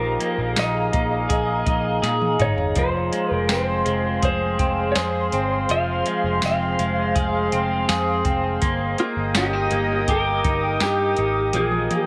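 Dream pop in F minor at 82 BPM, hazy and melancholic, this excerpt cut from a longer piece sets a dark, slightly broken-up electric slide guitar melody with tape echo over a warbling, detuned pad of sustained chords and up-front arpeggios from a compressed electric guitar at the edge of break-up, treated with subtle chorus and tape echo. Underneath, a round, foam-muted picked bass holds the low end while a soft vintage rhythm box with a deep kick, crisp snare, metallic hats, tambourine and toms enters at 0.2 seconds and plays fills at 2.0 and 11.5 seconds. The harmony moves from Bb7sus4 to Fm and Eb/G before returning to Bb7sus4, all set in a moderate concert hall reverb.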